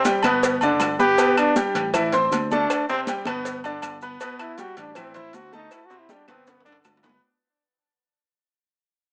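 A straight four-beat salsa groove drives this sunny, festive excerpt from a longer piece, with congas, cowbell and bongos, agogo bells and timbales, and maracas entering together just after the opening, and claves following a moment later. Up front, a brilliant, forceful trombone carries the solo melody with vibrato and a touch of analog delay, while a bright baby grand piano accompanies in an intimate, polished voice, its short sustain and audible action noise close at hand. A growly, punchy picked electric bass anchors the low end. The percussion has its own textures: tight, hard-handed bongos and cowbell, damped, thick-skinned congas in the background, ringing metal-shelled timbales, woody claves and grainy, mellow maracas. The harmony moves between G add9 and A minor colours, and a drum fill arrives at 6.1 seconds as the whole clip fades out through a wet studio reverb, vinyl crackle and a small-speaker tone.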